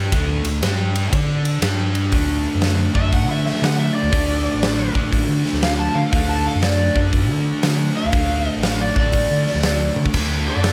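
Driving and swaggering, this short cut from a longer piece is blues rock with a southern rock lean, played in a swung 4/4. A fuzz guitar opens with a distorted, double-tracked riff that sits up front, alternating between D5 and G5 power chords before settling on D. Beneath it, an overdriven fingered bass adds a dark, round, punchy low end. A big acoustic rock kit with a fat snare, punchy kick, crash, ride, hi-hat and toms booms in a bright stone room. At 3.0 seconds an overdriven slide guitar enters with a soloing melody, its tone glazed by plate reverb and digital delay, and a drum fill arrives at 9.9 seconds.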